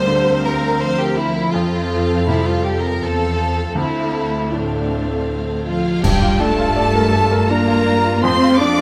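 Closely miked with light reverb, this sorrowful, bittersweet cinematic film-score excerpt in a rubato 3/4 sets a distant, lush violin melody over a smooth second violin line, clear short-sustained piano, even violas and focused cellos and double basses, with bright cymbals and bass drum arriving at 1.5 seconds and a pure flute, present clarinet and mellow French horns joining at 5.7 seconds before an ensemble accent at 6.0 seconds.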